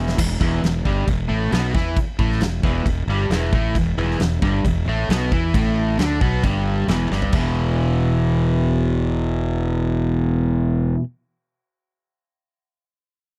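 A crunchy, double-tracked electric guitar leads this short cut from a longer piece, picking a bright overdriven riff around an E5 chord and sitting up front in the mix. Beneath it, a warm, fingered electric bass growls through fuzz and overdrive, also placed forward in the low register. A huge acoustic arena drum kit with a fat snare, punchy kick, toms and crash cymbals opens with a fill, plays another fill near 7.1 seconds and stops at 7.4 seconds. Guitar and bass carry the final stretch after a change of section at 7.3 seconds. The style blends blues rock power trio and southern rock at 134 BPM in a straight 4/4, with a driving, raunchy mood. The recording is dry and close in a 1970s studio manner, though the drums keep a natural big-room character.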